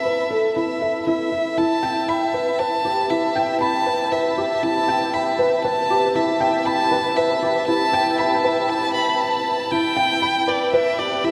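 A felt-muted upright piano riff and a dark violin melody open this cinematic, hypnotic electronica fragment, cut from a longer piece, at 118 BPM in E minor. The piano sounds soft and intimate, with its action noise audible up front and a touch of ensemble chorus and delay. The single bowed violin has a woody, boxy tone with light vibrato and its own delay, sitting close alongside the piano. The harmony moves from Asus2 to Em as a build-up starts at 1.6 seconds, moves into a brief break at 8.7 seconds, and reaches the drop at 9.7 seconds. A huge ambient reverb soaks the whole mix, giving it a dreamy atmosphere.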